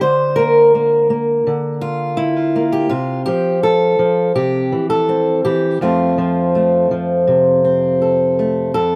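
Lightly reverberant and recorded outdoors, this short folk fragment cut from a longer piece features a solo fingerpicked steel-string acoustic guitar, up front with a touch of slapback echo, playing at a peaceful, nostalgic 83 BPM in F major, moving from Bbadd9/D through Csus4 and C to settle on F at 5.8 seconds.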